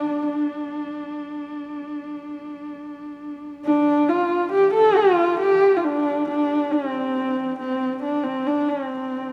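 A dark, nasal horsehead fiddle opens this solemn, windswept Mongolian folk fragment up front, bowing its melody with vibrato and portamento and trailed by a slapback echo. Beneath it, a second, quieter horsehead fiddle holds a warm, woody drone until 3.7 seconds. The husky, boxy lead then carries on alone into a new section until the cut from the longer piece at 9.3 seconds, the whole scene hanging in a huge ambient reverb.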